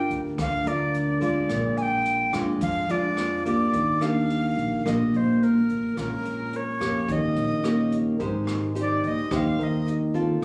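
Captured on a phone in a club-like room with light reverb and compression, this breezy, relaxed bossa nova at 108 BPM in Eb major sets an up-front, breathy wooden alto recorder melody with a soft attack over full-bodied, fingerpicked nylon-string guitar with audible finger squeak, woody pizzicato upright bass, and a natural-sounding brushed drum kit with a boomy kick and rim clicks, while a dark, mellow grand piano enters in the background at 8.2 seconds as the recorder takes a solo.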